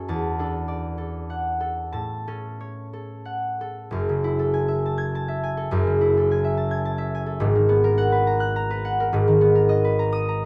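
Graceful and serene, this fragment of a longer classical solo for concert harp drifts in a rubato 3/4 between 87 and 108 BPM, its fingerpicked, ringing, up-front strings spanning F#1 to G#6 as the harmony moves from A major, coloured by E9sus4 and A6, into F# minor at 3.9 s with F#m9 and then G#m9 at 7.4 s, set in a dark production with a moderate large-studio reverb.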